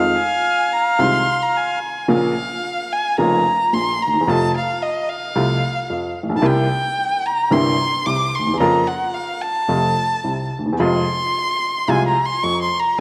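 A wet echo-chamber reverb with a long tail surrounds this excerpt of melancholic, passionate tango in Bb minor, played at 110 BPM in 4/4 with a rubato feel and tuned to A4 = 444 Hz. A reedy, dark bandoneon carries the melody through tape echo until 1.8 seconds, while a woody, slightly detuned upright piano with short sustain supplies the accompaniment. A single bowed violin, close and up front, enters at 0.2 seconds with a second line full of vibrato and portamento, with a soft attack and a warm, expressive tone, and from 2.1 seconds takes it as a solo over chords moving through Bbm, F and C7.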